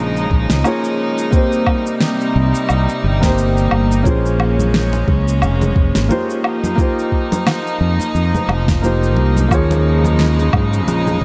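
A round, up-front fingered electric bass anchors this wistful sunset chillout excerpt, swinging gently in 4/4 beneath a dark, mellow grand piano with long sustain, low-pass filtering and tape echo, alongside a rich, earthy chamber string section holding bowed chords with light vibrato. A soft electronic kick and fat electronic snare, cabasa and woodblock drive the groove from the opening moments, while ringing acoustic congas join in the background at 4.4 seconds. Light reverb and small-room ambience frame chords that drift from Eb9sus4 through Cm7, Bbm9 and F7sus4 before returning to Eb9sus4.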